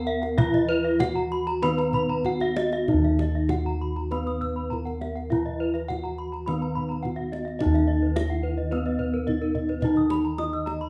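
Brilliant, hypnotic Balinese gamelan, cut from a longer piece and played live in one room with moderate studio reverb, where a mellow, close-miked bronze metallophone struck with padded disc mallets carries the melody over a horn-mallet metallophone accompaniment, two bright, shimmering metallophone arpeggio lines (one notably airy) ring above, dark, round bossed gongs anchor the bass up front, and a tight kendang played with hard hands sounds throughout as the music moves into a new section at 7.6 seconds.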